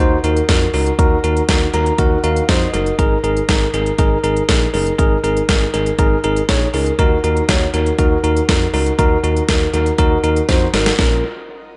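Melancholic and nocturnal, this short synth-pop excerpt at 120 BPM sets a bell-like tine electric piano, bathed in shimmer reverb and adding a fill from 1.5 to 3.0 seconds, over a smooth sawtooth synth bass and a punchy, up-front pop drum kit with deep snare, crisp hats and analog delay that closes on a drum fill at 10.5 seconds, all moving through Ebm and Absus2 toward Bbm in an echo-heavy spring-reverb mix with a dark top end and a faint mains hum.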